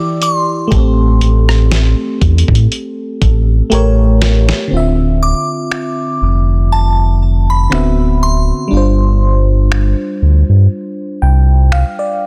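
A deep, full sub bass with an octave sits up front in this longing, late-night contemporary R&B excerpt, entering at 0.7 seconds with a sustained, sine-like tone. A dusty soul sampler-style drum kit of kick, snare, hi-hat, rim click and finger snaps carries gritty 12-bit sampler character, a thumpy kick and a fat snare with soft clipping. After a drum fill, the kick drops out from 4.7 seconds. An FM electric piano with a bell-like attack and chorus supplies the chords throughout and closes with a fill of its own from 10.7 seconds. Above it, a crystalline, bright synth bell carries the melody with chorus, phaser and digital delay, while a soft, round, very quiet pluck adds dark texture in the opening seconds. Swung sixteenths give the groove a relaxed sway, and digital ambience with a dense, heavily limited modern master keeps the sound loud.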